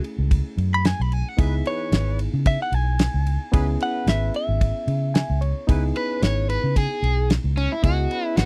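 Straight-eighth soul blues in C# minor at 112 BPM, soulful and mournful and cut from a longer piece, where a clean, direct-recorded electric guitar solos over F#m9 and C#m9 chords until 5.4 seconds, a barky, reedy electric piano adds a fill at 4.9 seconds, a horn section holds sustained chords with light vibrato in the background, a damped 70s drum kit with a fat snare and dark cymbals drives up front beside a round, foam-muted vintage fingered bass, and at 6.0 seconds an overdriven, compressed electric guitar takes the melody with harmonic tremolo, captured in a dry, close 1970s-style studio sound.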